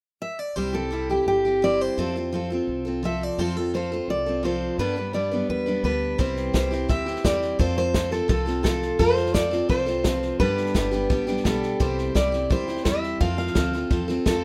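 Nostalgic and heartfelt, this short cut from a longer honky-tonk and classic country piece moves at a brisk 171 BPM in a straight 4/4, sitting in C major. A picked steel-string acoustic guitar carries the melody from the start, its full-bodied dreadnought tone up front, with fresh strings and audible finger squeak. A second picked acoustic guitar, brighter in character, joins at 0.6 seconds with the accompaniment, alongside a woody, thumpy upright bass played pizzicato. The chords move through C, F and G, and at 6.2 seconds a natural country drum kit enters with hi-hat, a tight kick and a medium-tuned snare, as the music moves into its second section. The sound is dry, with little reverb, and has the rough feel of a home demo mix.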